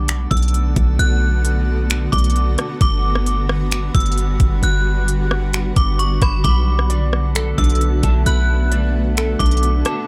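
Melancholic and hazy, this atmospheric cloud-rap excerpt moves at 132 BPM in a half-time feel in B minor, where a knocking, crisp trap kit of kick, hi-hat, finger snaps and rim click sits up front beside a deep, boomy 808-style bass, under a blurred, evolving granular pad that pumps against the beat and a glassy, drifting harmonics texture far in the background. Above them a ringing, inharmonic FM bell carries the melody with chorus and tape echo, while the chords shift from Bm7 to Gmaj7 and back. At 6.4 seconds a slightly broken-up electric guitar enters with fingered arpeggios colored by ensemble chorus and tape echo, all in a dry, close mix.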